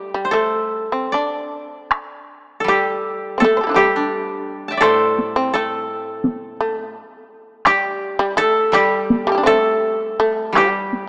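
Calm and austere, this short cut from a longer piece of Japanese traditional chamber music moves in a loose, rubato 4/4 with uneven beats. A koto carries the melody up front, its fingerpicked tone dry and woody, while a second koto sits lower and quieter as accompaniment, brighter in color. A fretless shamisen plays the second line beside the lead, plectrum-plucked with a buzzing, percussive bite. At 1.9 seconds a taiko ensemble enters, struck with heavy sticks and heard close and forward. The hall reverb is lush and moderate, yet the overall mix has the rough feel of a home demo played through a small speaker.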